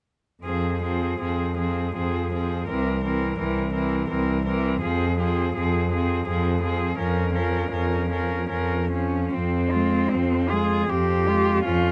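From 0.4 s, four bowed cellos with mutes play a yearning, elegiac classical passage in a rubato 3/4, their dark, veiled tone close and detailed in light reverb: the up-front melody sings with vibrato and a smooth top over a second line and a light-vibrato accompaniment, while the bass cello, also up front, anchors the harmony with soft attacks and portamento before a new section begins at 9.3 s.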